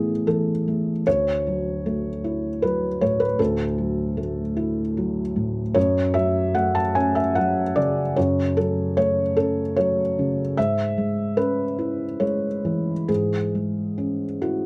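A felt-muted upright piano carries this short neoclassical minimalist fragment entirely on its own, its thick felt giving the tone a dark, mellow softness while the audible action noise sits close and intimate, up front in a light reverb. The mood is hopeful and peaceful, moving in a gentle 3/4 with a rubato feel that drifts between roughly 66 and 78 BPM, tuned to A4 = 439 Hz. Spanning from D2 up to A5, the piano moves through Asus2 and Dadd9 before settling onto F#m at 5.8 seconds and C#m/G# at 10.6 seconds. The excerpt lasts 14.7 seconds and is cut from a longer work, so it feels like a quiet glimpse into something still unfolding.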